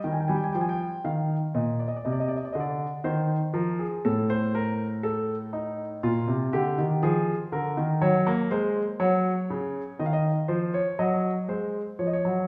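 Elegant and joyful, this brief baroque-style two-part invention for grand piano is cut from a longer piece and moves with a straight, unhurried 4/4 pulse. The solo grand piano has a present, polished tone placed up front, spanning from A2 up to Ab5 across its 12.5 seconds. The harmony travels from Eb through Ab/C, a stark A chord with a flattened fifth and its third omitted, then Bb and Gb before settling on Dbmaj9/Eb and Ab7/Gb near the close. A wet recital hall reverb with a 1.5 second decay surrounds the instrument, giving the sense of a church or concert hall while a small room ambience keeps the sound close. The tuning sits slightly under standard pitch, at A4 = 439 Hz.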